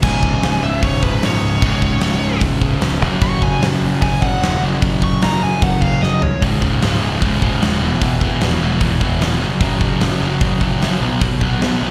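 A sludgy, overdriven guitar riff sits up front with slapback echo, joined by a brighter distorted guitar in the background, while a growly fuzz bass and a big acoustic drum kit with a fat snare and punchy kick drive this energetic, rebellious punk rock cut from a longer piece. A biting lead guitar with overdrive and delay takes a solo from the start until 6.4 seconds, capped by a drum fill from 6.0 seconds. The whole band is heard as a live gig through a club PA, with light reverb and a bright stone-room character on the drums.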